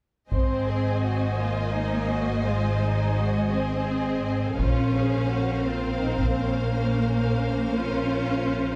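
Cinematic, epic orchestral film score in 6/8 at a slow 56 BPM, counted in dotted quarters, with a triumphant, heroic mood in Ab mixolydian. The full string body enters together at 0.3 s: violins carry a smooth, even melody high in their range while a second violin line sits beneath with a focused tone, and the violas add expressive accompaniment with soft attacks and touches of portamento. Cellos supply a rich, focused bass part, and the double basses sound woody and up front at the bottom. All sections are bowed with vibrato, and the parts beneath the melody share a lush ensemble blend. A close taiko ensemble struck with hard sticks drives the passage until 6.5 s, after which the strings continue alone to 8.8 s. The harmony moves from Ab to Bbmadd9 at 4.6 s, and a moderate scoring-stage reverb with a 2.1-second tail gives the dark production its sense of space in this fragment cut from a longer piece.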